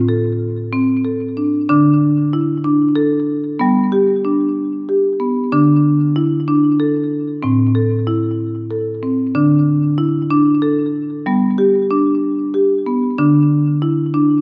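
Meditative and gentle, this world piece, cut from a longer work, features a solo marimba played with medium mallets from 0.0 to 14.4 seconds, its woody, mid-forward padauk bars sitting up front with tape echo and ranging from A2 to A4, moving unhurriedly in 6/8 at 63 BPM through a repeating cycle of Am, D5 and G, all within a dark production bathed in a wet scoring-stage reverb.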